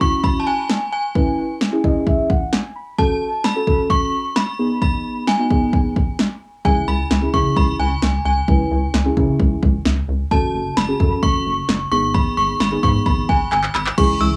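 A punchy analog drum machine drives this nocturnal synth-pop excerpt in a straight 4/4 feel, its dry, overdriven kick, snare, handclaps and crash sitting up front until a drum fill closes out at 14.0 seconds. From the opening, an inharmonic FM synth chime carries the melody high in the mix, its ringing tones spread by ensemble chorus, analog delay and plate reverb, while muted, felt-like synth keys supply intimate accompaniment and add a short fill between 1.6 and 3.0 seconds. A rubbery square bass enters at 6.7 seconds, hollow and bouncy with a touch of tube saturation beneath the cycling minor chords. In the final moments an evolving, airy pad with a slow attack and a filter swell and a soft, round pluck playing arpeggios appear briefly in the background. Cassette tape coloring and a moderate booth ambience give the whole a lo-fi, home-recorded intimacy that suits its driving after-dark mood.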